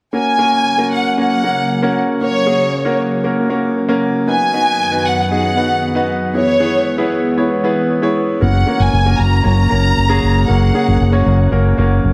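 Uplifting and anthemic, this pop excerpt opens with a clear, polished grand piano carrying the accompaniment through dub echo, while a thick, detuned unison pad with chorus holds sustained chords beneath and a studio violin section with soft attack and vibrato sings the expressive bowed melody, also drenched in dub echo. The chords move from F# through B/F# and E before returning to F#, and at 8.4 seconds a round, punchy fingered electric bass arrives on a low F#, sitting prominently up front. The echo-heavy mix is set in a moderate echo chamber reverb with small room ambience.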